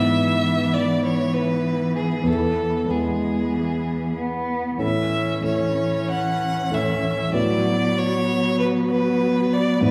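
A quick, graceful classical-period movement for piano quartet opens with all four players sounding together from the first moment, moving at 96 BPM in 4/4 with a spirited yet rubato feel. A rich, smooth violin carries the melody up front, its even vibrato tone ranging from G#4 to F#5. Beneath it, a distant, expressive cello shapes a second line between E3 and B3, using vibrato and portamento, while a viola adds a warm, smooth, bowed accompaniment held in the narrow span of B3 to C#4. The grand piano supports the strings with a warm, short-sustained accompaniment reaching from E2 up to B4. The harmony passes from E/G# to E, then A at 4.8 seconds and Bm7/A at 7.4 seconds, all bathed in the wet reverb of a recital hall in this short fragment cut from a longer piece.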